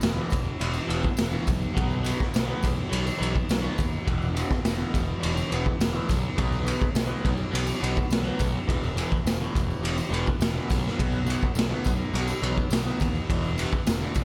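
This hypnotic, trippy psychedelic rock excerpt opens at once with a boomy, gritty garage drum kit up front, playing kick, snare and ride cymbal in a small, pumping room at a straight 104 BPM in 4/4. Beneath it, a punchy fuzz bass, overdriven and picked, holds down the low end. A very quiet tanpura drone buzzes and shimmers softly, joined by a jingly tambourine sitting close but in the background of the mix. At 0.2 seconds a double-tracked fuzz guitar enters with a distorted, phaser-coloured riff. The harmony rocks between E5 and B5 power chords, all bathed in a light small-room reverb and tuned slightly sharp to A4 = 443 Hz.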